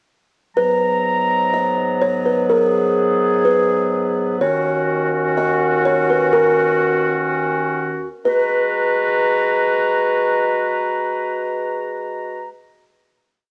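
A buzzing, woody kalimba loops a sparse, mellow melody from 0.6 s to 9.7 s in this melancholic, hazy half-time hip hop piece, over a warm, classical-style woodwind section that holds tight sustained chords and carries on alone after 9.7 s, letting the final chord ring out to 12.5 s, with cassette tape grain on both parts, analog delay on the kalimba, and spring reverb in a small, homespun room.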